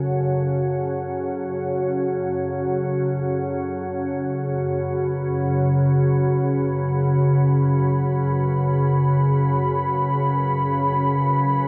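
An up-front, organ-like drone of detuned sine tones with ensemble chorus and its own reverb holds low and calm under a deep, moody analog pad of detuned sawtooth and triangle layers with a sub octave and chorus, both sustaining a single F#m chord in free time through this vast, ominous dark ambient fragment of 11.7 seconds, all bathed in an enormous, wet reverb that hangs for 8.6 seconds.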